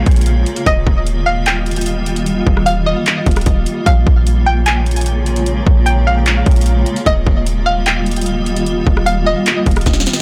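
Ethereal and melancholic, this cut from a longer atmospheric cloud-rap track moves with a half-time hip hop feel, built on chords that shift between Bbm7 and Ebadd9. A granular cloud pad holds sustained chords from the start, blurred and evolving with its own reverb and a sidechain pumping effect, while a breathy, wind-like tuned noise texture sits in the background beneath it. Up front, a clean 808-style bass gives deep, boomy sine notes with a fast attack, and the trap drum kit brings a hard-clipped kick, sharp snare, metallic hats, handclaps and rim clicks, ending on a drum fill at 9.9 seconds. From 0.7 seconds a string-like resonator pluck carries the melody in a high register, twangy and warbling with a vintage character, a moving notch, chorus and tape echo. The overall sound is dry, blown-out and overdriven.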